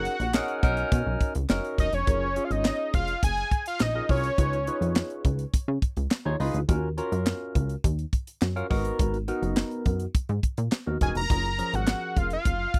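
A fat, detuned analog lead with chorus carries the melody from the start alongside a barky tine electric piano through phaser and tube saturation and a plucky, punchy analog bass, with a tight funk kit of kick, high-tuned snare, hi-hat and handclaps joining at 0.1 s in this feel-good, danceable early-eighties boogie funk excerpt, the lead dropping out at 5.2 s and returning at 11.0 s over ninth and seventh chords, all captured in a close studio sound with little reverb.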